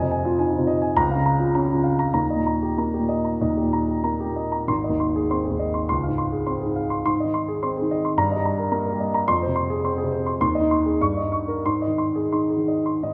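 A warm, woody upright piano carries this short passage from a longer piece, sitting up front as the only instrument. It is a lyrical, hopeful romantic character piece in A-flat major and 4/4, moving at roughly 85 to 109 BPM with a freely breathing rubato feel. The harmony opens on F minor seventh and travels through B-flat minor and E-flat before settling on A-flat near 4.7 seconds, then colours the home key with a D-flat major seventh. Later the progression passes through F minor and an E-flat seventh chord before resolving to A-flat at 11.6 seconds. The piano ranges from deep bass notes up into its high register, and a wet recital hall reverb lends the sound a lingering, spacious tail.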